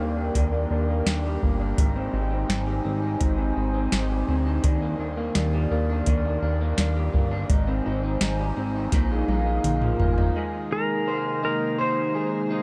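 Bathed in light reverb and digital ambience, this blissful, floating dream pop excerpt at 84 BPM sets a warbling, detuned tape-like pad and arpeggios from a slightly broken-up electric guitar with lush chorus and delay over a glossy chorused pulse-wave synth bass and a soft vintage rhythm box with a deep kick and crisp snare, which plays a fill from 8.9 seconds before a clean, compressed lap steel melody with slide enters at 10.7 seconds over an Abadd9 chord.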